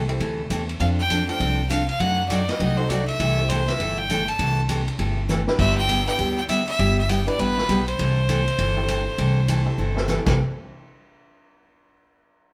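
Down-home and swinging, this western swing country excerpt moves at a brisk 200 BPM in C major, with a growly, woody pizzicato upright bass up front and a picked dreadnought acoustic guitar with audible finger squeak playing through C6, F6, F#dim7 and G6 changes. A clear, intense bowed fiddle enters at 0.8 seconds with the melody and light vibrato, while a brilliant, short-sustained upright piano sits in the background. A vintage drum kit with dark cymbals and a punchy kick drops fills at 5.3 and 9.8 seconds, and the whole band plays live in one stone room with moderate reverb.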